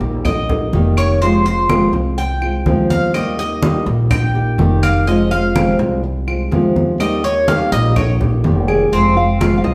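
Heard from further back in a reverberant large studio, this nostalgic, danceable Cuban son and guajira groove in F minor at 124 BPM features a metallic, double-strung Cuban tres soloing in bright picked arpeggios up front over a dark, fingerpicked flamenco guitar, a growly pizzicato upright bass, low-tuned soft-hand congas and woody claves in the background, with chords alternating between Eb and Fm before a full-bodied, thumb-plucked nylon-string guitar melody enters at 8.7 seconds.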